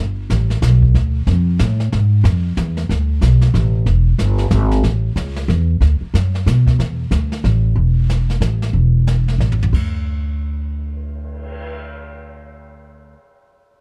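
A swung waltz in 3/4 at 185 BPM, its eighth notes leaning into a light swing, sets a relaxed, playful jazz trio mood in this short cut from a longer piece. Upright bass carries the low end from the opening, plucked and up front, with a woody, thumpy tone from steel strings, moving between E1 and B2. A brushed jazz kit enters at 0.3 seconds and sits well behind the bass. The kit has an airy, polished small-room sound, with dark cymbals, a medium-tuned snare and a boomy kick, and draws on brushed snare, hi-hat, toms, crash and a cymbal swell. A drum fill from 9.4 to 9.7 seconds leads into the closing passage. The overall production is dark and warm, with little reverb.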